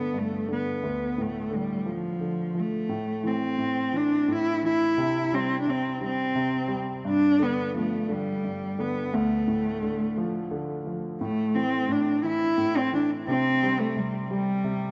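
A bowed cello carries the melody up front, a single player with a smooth, even tone, vibrato and a softened top, its line touched by a digital delay. Beneath it, a grand piano sits close and present, its low accompaniment polished, with notes of short sustain. This dramatic, melancholic pop fragment in 6/8 is cut from a longer piece, and it moves through G5, Dm and Am chords before turning to C5 and back again. At 11.2 seconds the music shifts into a new section built on A5 and C5, and the clip ends at 14.9 seconds. A lush, wet hall reverb surrounds both instruments, and the rough home-demo mix has a dull, rolled-off high end.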